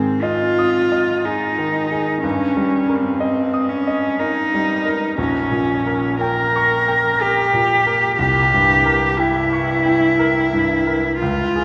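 Bathed in a long, wet church reverb, this brief excerpt of a romantic classical duo unfolds at a slow 60 BPM in 3/4, with a tender, rubato feel and tuning set to A4 = 441 Hz. A single bowed cello carries the melody up front, its warm tone focused and smooth at the top with vibrato. Beneath it, a bright, brilliant grand piano, also close and natural, supplies the accompaniment across a broad range from deep bass to high treble.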